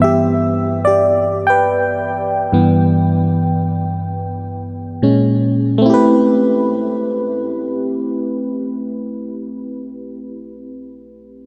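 A dreamy mix drenched in a huge ambient reverb, with a long 6.5-second tail and a faint mains hum beneath it, frames this short cut from a longer R&B piece. A lone FM electric piano sits up front for the full 11.5 seconds, its glassy, bell-like attack blooming into a warbling, vintage tone with a noise layer, and each note decays into the wash. Chorus and a diffuse ambient delay thicken its sound, spreading it from low G2 up to G5. The mood is longing and sensual, moving through G6, Bbm7 at 5.0 seconds and Am7 at 5.9 seconds, where the passage shifts into a new section.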